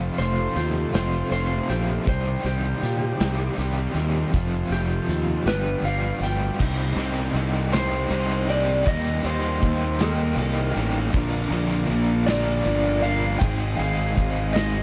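Indie rock in a slow, moody 6/8 at 53 BPM, this cool, darkly produced excerpt moves from C dorian into C minor at 6.6 s, with a fuzzy, punchy fingered bass up front beneath two picked, overdriven guitar riffs in the background, one with tremolo and one with lush chorus. A slightly broken-up, lo-fi guitar through a small old amp carries the melody with spring reverb and analog delay, a clean electric guitar solo runs until 6.6 s, and a buzzy vintage combo organ holds very quiet sustained chords with light vibrato. A loose acoustic kit with dark cymbals, a medium-tuned snare and a tight kick pumps in a small room, joined by crisp, very quiet group handclaps from 6.6 s.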